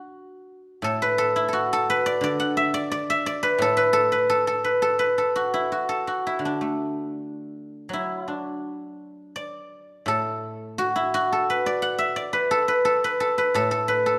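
Set in a moderate scoring-stage reverb, this flowing, elegant excerpt of traditional Chinese solo music features a fingerpicked acoustic guzheng, up front with a silvery, ringing tone, playing alone for 14.2 seconds in a free, rubato feel around 85 BPM in a D gong mode, its range spanning from A2 to F#5.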